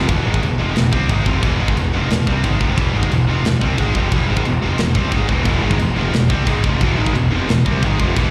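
In a straight 4/4, this dark, relentless heavy metal fragment from a longer piece is driven by a tight drum kit of kick, medium-tuned snare and bright china cymbal, under two scooped, high-gain guitar riffs coated in distortion and slapback echo. A punchy, fuzz-laden bass sits up front, while a very quiet double-tracked overdriven guitar flickers at the start and returns at 5.5 s. The whole band sounds like a live gig heard through the venue's PA, bathed in recital hall reverb.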